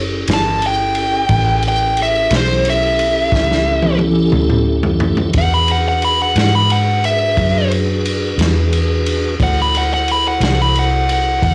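A piping, key-clicking tonewheel organ with slow rotary chorus vibrato holds sustained chords over a dark, foam-muted, round and punchy bass to open this rollicking yet laid-back slow blues excerpt in 12/8 at 59 BPM in A mixolydian, before a smooth, overdriven, picked lead guitar takes an up-front solo and a muffled, lo-fi small-room drum kit of tight kick, medium-tuned snare, ride and toms joins at 0.3 seconds, adding a fill from 3.3 to 5.3 seconds as the changes move from A7 to E7 and D7, all captured in a blown-out, overdriven recording with light studio reverb.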